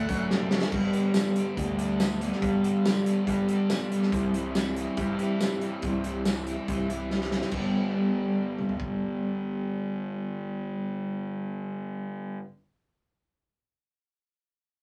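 A bright, crunchy overdriven guitar riff and a dark, slightly broken-up, lo-fi guitar with harmonic tremolo sitting in the background open this upbeat, carefree indie rock piece in G major at 141 BPM over an up-front, fuzz-soaked picked bass, while a loose acoustic drum kit with a fat snare, tight kick and tambourine joins at 0.1 seconds, plays a fill shortly after, and drops out at 8.9 seconds, all heard in a rough rehearsal-room recording with light reverb as the chords move from D to G and C and back to G.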